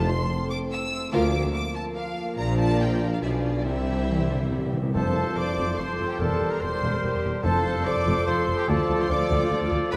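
A lush bowed string body opens this spirited, dramatic orchestral movement in F major: violins carry the vibrato-rich melody high above a second violin line, while violas, cellos, double basses and a very quiet tuba fill the middle and low end, and a dark, distant French horn section holds sustained chords in the background. Set at a fast 144 BPM in 3/4, this excerpt has the lively sweep of a romantic symphony, with harmony moving from F through Bb and a tense Bdim7 onto C. Timpani, close and dry with medium mallets, strike at the very start and return with a fill from 3.7 to 5.0 seconds that leads into the second section. Around 4.9 seconds the woodwinds and brass join, with a mellow, hollow flute, a distant oboe and a very quiet, clear clarinet adding second lines, a bassoon supporting the accompaniment, and a bright trumpet punctuating with stabs. The whole orchestra sits in a vast, echoing cathedral-like space with a long, wet reverb tail, and the passage is cut from a longer piece, ending on a D minor chord.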